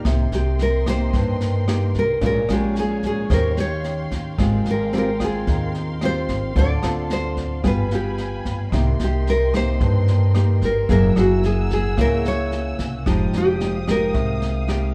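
Bossa nova in C minor at 111 BPM, relaxed and breezy, with a fingerpicked nylon-string guitar melody entering at 0.3 seconds over a second fingerpicked nylon-string guitar's accompaniment, thumpy pizzicato upright bass, a dark brushed drum kit with punchy kick, rim click and high-tuned snare, and a veiled, muted violin section holding lush sustained chords, all played live in one room with light reverb as the harmony moves from Cm7 through Abmaj13 and G7b9 to close on Fm9.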